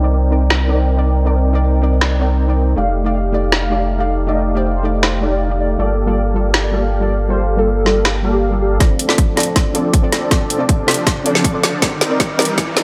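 A lightly reverberant, dreamy and lush future bass piece at 159 BPM in a half-time feel, built on sidechain-pumped layers: a soft, round pluck with chorus and delay, a smooth, detuned supersaw riff, and a deep, saturated sub bass sitting up front, with a trap kit of woody snare, metallic hats and finger snaps entering at 0.5 seconds. A velvety, mellow synth lead with portamento and tape echo carries the melody from 2.8 to 8.7 seconds over chords moving from Cm9 through F13 and Gm9. From 8.8 seconds the music shifts into a build-up, where a hard-clipped electronic kick joins a drum fill, the supersaw is swept through its filter, and a background riser climbs toward the cut.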